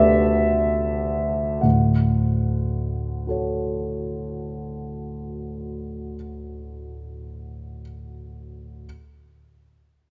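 A warm, present grand piano plays alone, up front and ringing with long sustain across a span from D2 to F#5, in this luminous, dreamy excerpt of impressionist classical solo piano. In D major at a slow 36 BPM in 3/4 with a rubato feel, it slows down over the opening 1.6 seconds on an A11/D chord before settling onto Dmaj7. A wet concert hall reverb with a 2.0-second decay surrounds the instrument, and the piano sounds until 8.9 seconds.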